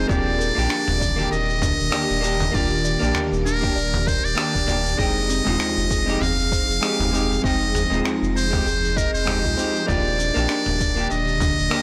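A 16th-note swing at 98 BPM in 4/4 drives this smooth sunset chillout excerpt in Eb major, where an up-front, buzzy trumpet with metal mute carries the melody through digital delay over a clean, picked hollow-body jazz guitar and a woody, ringing kalimba playing arpeggios (both also delayed), an ethereal chorused pad holding Ebmaj7 and Fm7 chords in the background, a round sub bass with tube saturation, a gritty sampler-style kit of finger snaps, shaker and toms, and a deep, overdriven electronic kick, the whole recording sounding blown-out and overdriven with light reverb.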